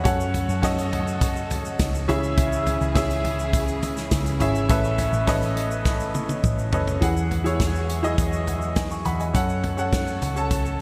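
Piano-driven pop with an anthemic, warm mood, heard in a short cut from a longer piece, where a clear, woody upright piano with a slightly detuned, long-sustaining tone sits up front over a dark, round, foam-muted electric bass. Behind them, a lush bowed string section with vibrato and portamento holds sustained chords, while a grainy, mellow shaker adds texture from the live room and a natural country drum kit drives the groove with a punchy kick and medium-tuned snare. A drum fill from 5.9 to 7.0 seconds leads into a new section on an Eadd9 chord, all set in a lush hall reverb with a bright 1980s-style digital sheen.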